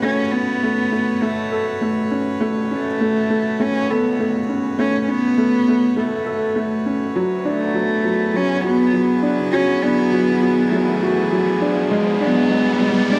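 A close, intimate cello leads this tender, hopeful piano-and-strings electronica excerpt, singing the melody up front with light vibrato and a soft, airy sul tasto bow. Beside it, a woody, slightly detuned upright piano plays a boxy riff with short sustain, while a string quartet, one player per line, holds pure, floating chords. Underneath, a bowed double bass section supplies a smooth, very quiet bass line with vibrato. The harmony moves from Aadd9 to Dadd9 at 7.2 seconds and on to E7, and the whole passage works as a build-up. An electronic riser enters at 9.4 seconds and carries through to the cut, all set in a moderate scoring-stage reverb with a touch of small-room ambience.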